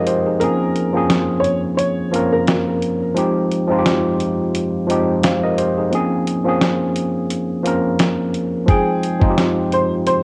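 Boom-bap hip-hop at 87 BPM with a swung sixteenth feel, this gritty, tough excerpt from a longer piece rides a Bbm7 to Fm7 vamp on a worn, barky tine electric piano that sits up front, slightly out of tune through its built-in speakers. A compressed, sampler-style soul drum kit pushes a thumpy kick, fat snare and hi-hat forward, while a dark, woody, intimate upright piano with a boxy tone and audible action noise carries a short melody until 2.5 seconds, falls away for the break, and returns at 8.7 seconds. Cassette tape grit colours every part, the upright gets a tape echo, and a light digital reverb adds ambience to the home recording.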